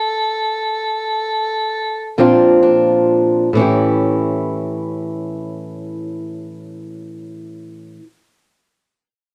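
A dark, gently reverberant production frames this brief excerpt of acoustic country blues, rollicking yet soulful in mood. A mellow harmonica opens alone, its jazz-style line sung with light vibrato, a soft attack and scooped notes, sitting up front yet sounding distant and roomy over an A5 chord. The music slows over the first 3.5 seconds, and the harmonica falls silent at 2.2 seconds, when a fingerpicked, ladder-braced acoustic guitar takes over on a Bbadd9 chord. The guitar's old strings give it a woody, boxy character as it settles onto an A7 for the closing passage, carrying the accompaniment up front and a touch louder than the harmonica was.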